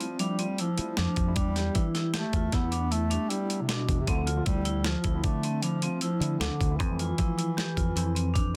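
Progressive instrumental band music in 7/4, driving and intricate, where an up-front, mellow bass clarinet carries a classical-style solo melody with tape echo over ringing vibraphone arpeggios shimmering with fast motor vibrato, a worn, slightly out-of-tune tine electric piano lightly overdriven in the background, a round, dark fingered electric bass, and a gritty, compressed sampler-style drum kit with a thumpy kick pushed to the front, all in a dense, heavily limited mix cut from a longer piece.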